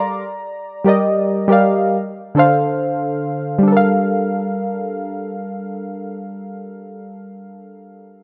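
Analog keys sit up front, their round, detuned sawtooth tone softened by chorus and a filter sweep into something mellow. Each note has a fast attack and then decays. The piece is a moody, longing R&B cut at 69 BPM in 4/4 and G minor, with a light swing on the sixteenths. The keys play accompaniment across a range from D3 to D6, and harmony moves from Gm7 to Dm7 at 1.9 seconds before returning to Gm7 when a new section begins at 3.7 seconds. A light reverb surrounds the sound, and the keys carry through to 8.2 seconds in this short excerpt from a longer piece.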